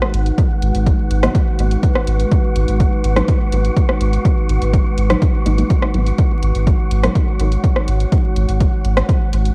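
A punchy, overdriven electronic kick sits up front in this cavernous, nocturnal dub techno fragment, cut from a longer piece and driving a straight pulse. Beside it, a round sine sub bass holds a single low note with tube saturation and sidechain pumping, while a layered deep house kit adds hi-hat and rim click through overdrive, studio reverb and dub echo. A moody, detuned sawtooth pad sustains a minor seventh chord throughout, softened by chorus and its own reverb and breathing with the sidechain. Deep in the background, a muted chord stab enters at 1.2 seconds and stops at 7.1 seconds, its filter sweeping as phaser and dub echo trail its short, plucky notes. An airy, breathy wind-like noise layer hovers in the upper register, and the whole recording carries the quality of a home cassette recording with vinyl crackle and a digital ambience.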